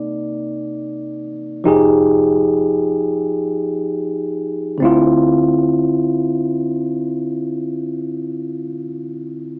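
R&B in free time, soulful and smooth, this short cut from a longer piece sets a tine electric piano up front, clean through a combo amp and softened by a low-pass filter, cassette tape character and plate reverb, with a filter sweep over its first 4.8 seconds as the chords move from Cm9 to Fm9 before settling on Dm9 in D phrygian. Beneath it, a vintage muted fingered electric bass sits in the background, dark, round and punchy, and stops at 8.7 seconds while the piano carries on to 9.6. The whole has a home cassette feel, like sound from a small speaker, in a wet studio reverb.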